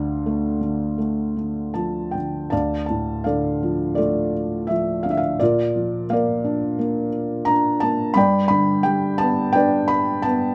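Classical solo piano with a lyrical, moody and brooding character, heard as a short passage cut from a longer piece. A felt-muted upright piano carries everything alone, spanning D2 to B5 in a flexible rubato over a 4/4 pulse. Its tone is soft, mellow and boxy, set up front and intimate, with the mechanical noise of the action clearly audible under the notes. A brief opening idea gives way at 2.5 s to a longer second passage, while the harmony moves from D minor to B-flat and then to G. Moderate studio reverb adds a little air around the instrument, and the production as a whole leans dark and warm.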